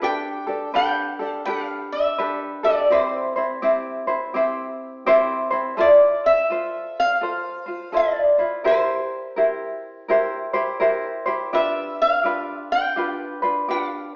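Dreamy and languid, this Hawaiian piece drifts along at 83 BPM in 4/4 with a gentle swung eighth-note feel, and it is cut from a longer piece. A lap resonator guitar, played with fingerpicks and a slide, carries the melody between C5 and G5, its acoustic tone metallic and nasal and sitting up front. Beneath it, a tenor ukulele fingerpicks a light accompaniment from C4 to C5, also acoustic and close in the mix. The music opens in C major over Gadd9 and C, then moves to F major at 5.8 s, passing through Fmaj7, C7 and G7 before the ukulele stops at 14.1 s and the guitar at 14.2 s. The pair sound like a band playing live in one room, bathed in a stone room's wet reverb and filtered through an AM radio sound.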